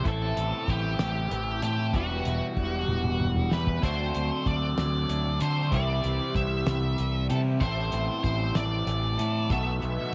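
Set in a straight 6/8 at 64 BPM, counted in dotted quarters, this bittersweet, restless indie rock excerpt moves through Am, Emadd9, D7 and C, back to Am, and lands on B7sus4. A cloth-damped drum kit, dry and dark with a fat snare and a tight kick, comes in at 0.1 seconds and plays a fill between 2.9 and 3.8 seconds. Up front, a growling fingered electric bass is overdriven and punchy. A biting overdriven guitar picks a riff through a phaser, while in the background a bright, twangy twelve-string electric guitar plays a clean, compressed riff with ensemble chorus. Over them, an octave-fuzz lead guitar carries the melody in a dark, distorted tone, all captured as a home cassette recording with little reverb.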